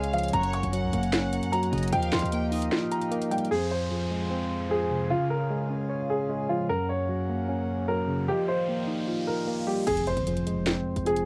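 A worn, slightly out-of-tune electric piano sits up front through its built-in speakers, carrying the accompaniment beneath a dark, mellow grand piano melody in this brooding half-time trap fragment. Both pianos are filtered and coloured by cassette tape, joined by a reedy, breathing harmonium holding chords. A lush bowed violin section with vibrato and analog delay adds a brief second line until 2.7 seconds, while punchy 808 bass and an electronic trap kit with a sharp snare, metallic hi-hats and crash cymbal drop away, leaving electronic sound effects to build with a riser from 7.5 seconds until bass and drums return with an impact at 9.9 seconds, all captured as a home cassette recording in a modest booth ambience.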